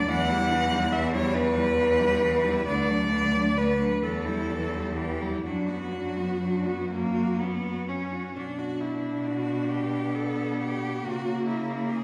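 A close, rich cello carries the yearning melody up front in this solemn classical piece for cello ensemble, unfolding in a rubato 6/8 at 40-48 BPM in B minor, while a second cello sings a smooth, vibrato-laden line in the background, a third bowed cello plays even accompaniment, and a warm, expressive bass cello with portamento anchors the harmony, all four sounding through the 12-second passage in the lingering reverb of a recital hall, with a new section arriving at 8.4 seconds.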